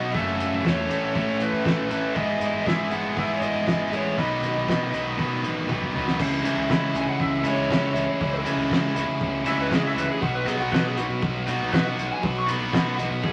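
A lo-fi, overdriven lead guitar carries the melody through this carefree yet wistful indie rock passage, stepping into a solo at 6.2 seconds. Beneath it, a biting overdriven guitar sits up front alongside a bright, cranked stack guitar, both playing picked riffs, while a punchy fuzz bass and a muffled, cloth-damped drum kit with dark cymbals, fat snare and tight kick lay down a straight groove. A drum fill at 5.7 seconds leads into the solo, and moderate studio reverb and vinyl crackle color this section, cut from a longer piece.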